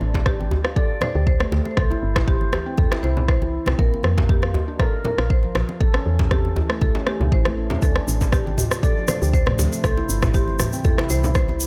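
An afro house excerpt at 119 BPM in D minor opens with a woody marimba melody and a ringing, meditative handpan arpeggio, both trailing dub echo, over a round, dark FM bass pumping against a deep, up-front electronic kick, with soft-handed congas in the background, a cracking djembe and an afro-pop kit's rim clicks and toms, before a grainy egg shaker enters at 7.8 seconds and an ethereal, airy pad adds sustained chords at 8.6 seconds, giving the echo-heavy groove a spiritual, earthy feel.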